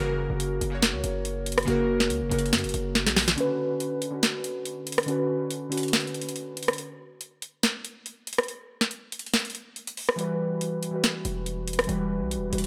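Glassy digital keys and a punchy, sine-based 808 bass with a noisy edge open this menacing, eerie half-time trap excerpt at 141 BPM in B harmonic minor. The overdriven trap kit arrives at 0.4 seconds, up front with a sharp snare, metallic hi-hats and rim clicks, and a drum fill at 3.0 seconds leads into a break where the bass drops out while the chorused, low-pass filtered keys ring over Bmadd9 before falling silent. The keys return over Emadd9, soon joined again by the heavy bass, all within a dry, gritty sound and a digital ambience.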